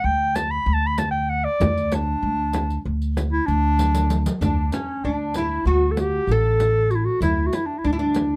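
Passionate and festive, this short cut from a longer piece is a Turkish makam ensemble tune in D makam rast, moving in a 9/8 metre at 193 eighth-note beats per minute with a straight feel. A breathy clarinet leads the melody from the start, up front and soloing with vibrato and scooped notes in a jazz-tinged style, while a pizzicato upright bass, woody and dark with steel strings, anchors the low end alongside it. A close, dry frame drum and a riq with bright, compressed jingles played by soft hands join at 0.4 seconds, and a drum fill at 3.8 seconds leads into the second section. At 4.4 seconds a fretless, plectrum-plucked oud enters with a second line, its double strings giving a bright yet deep tone. The production is dark and warm overall, set in light reverb.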